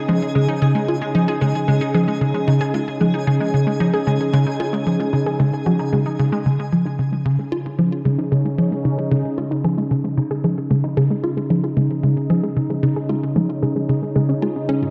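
Hypnotic and cosmic, this 113 BPM excerpt of sequencer-driven ambient space music, tuned to A4 = 441 Hz and centered on a C#sus2 chord, sets a tight, punchy sawtooth sequencer bass riff with analog chorus and delay up front beside an evolving, resonant, chorused pad of sustained chords, while a lush, warbling unison pluck spins delayed arpeggios that take on a filter sweep from 6.5 seconds, and a twinkling granular FM texture sparkles on G#4 through the first 6.5 seconds, all within an echo-heavy mix under moderate spring reverb.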